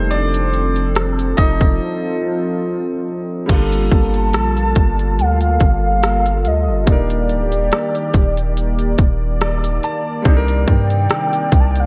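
Contemporary R&B at a romantic, smooth 71 BPM with a light 16th-note swing, where a natural-sounding grand piano with subtle chorus and a detuned sawtooth analog pad pumping under sidechain carry chords from F7 through Gm9, Ebmaj7 and Cm9 over a deep, mellow sine 808 bass and an up-front trap kit of hard-clipped kick, crisp hats, rim click and crash; a velvety unison synth lead with chorus and analog delay enters at 3.9 seconds, a piano fill arrives at 9.0 seconds, and a 2.6-second plate reverb gives the whole mix a dreamy haze.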